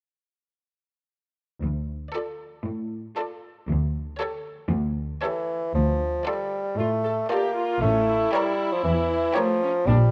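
A straight 4/4 pulse at 117 BPM drives this sneaky, quirky film cue in D minor, cut from a longer piece, where bowed double basses and a lush, up-front cello section lay down the low line from 1.6 seconds over Dm and A7 harmony. Violins carry a soft-attack melody set back in the mix, a second, more focused violin line and expressive violas fill the middle, and a solo bassoon with light vibrato steps forward at 5.2 seconds. The strings sound close and detailed under light reverb.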